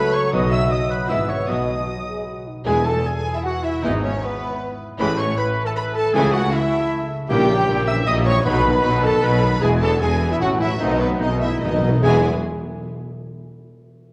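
In a lively 3/4 with a straight feel, this fast, dramatic romantic movement for symphony orchestra moves with a graceful sweep. The expressive violin section carries the melody with vibrato and portamento, shadowed by a mellow flute ensemble, a brief oboe, a second violin section and a vintage-toned clarinet that enters at 2.7 seconds. Beneath them sit quiet French horn and roomy trombone chords, mellow trumpet stabs, ringing harp arpeggios, a lush viola accompaniment, and a bass of cellos, double basses and dark tuba, while hard-mallet timpani drop out at 3.2 seconds, return at 8.5 seconds and play a fill before the close, all bathed in scoring-stage reverb and the warbling pitch drift of worn cassette tape.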